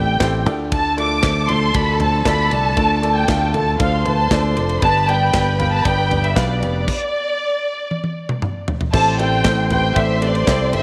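A straight 4/4 pulse carries this earnest, bittersweet piano-driven pop excerpt, with a lush bowed violin section singing the melody with vibrato and portamento, while a second, smoother violin line joins at 0.7 s. A mellow, felt-muted upright piano and a round, punchy fingered electric bass sit under them, and an acoustic drum kit with a tight kick, snare, toms, ride, crash and handclaps comes in at 0.2 s. The harmony moves from Dm to G to Am7, and a stop from 6.9 s gives way to a drum fill, all set in light, small-room reverb.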